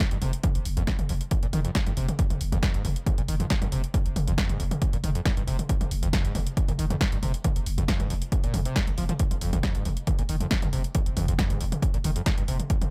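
An up-front analog kick, a layered drum kit with a punchy snare and warm, sidechain-pumped hats and toms, and a screaming, squelchy sawtooth acid riff between Eb2 and F3 all launch together in this dark, industrial peak-time techno fragment at 137 BPM in F minor. A growling, buzzy 808-style bass holding F1 through tube saturation, a low-pass filter and sidechain pumping follows a split second later. The acid riff sounds resonant and distorted, with a filter sweep, analog chorus, sidechain pumping and tape echo, all set in a dry, echo-heavy mix.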